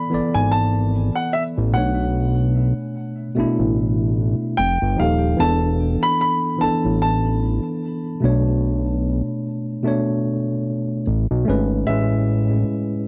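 A fat, thick analog bass sits up front in this smooth R&B excerpt, its saturated, sawtooth-edged tone pairing a fast attack with a long, mellow sustain in the low register from 0.1 to 12.6 seconds. Around it, a worn, slightly out-of-tune tine electric piano supplies the accompaniment across a broad range, lightly overdriven and heard as if through built-in speakers. A grand piano carries the melody high in its register, intimate and natural with short sustain and audible action noise. At 74 BPM in 4/4 with a gentle swing on the sixteenths, the harmony moves through E7sus4, Bm9 and F9, then returns to E7sus4 and Bm9 before settling on Amaj9 at 11.1 seconds, shortly before a brief new section begins at 11.9 seconds. The dry, close sound recalls a 1970s studio, giving the whole passage a warm, smooth mood.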